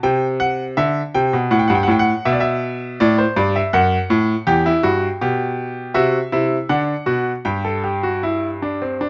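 Driving yet contemplative, this baroque-style three-part fugue for solo grand piano is cut from a longer piece and runs about 9.1 seconds. The piano sounds bright, brilliant and polished, sitting up front with short sustain as it spans from low bass to high treble. A moderate stone room reverb lends the playing a sense of space.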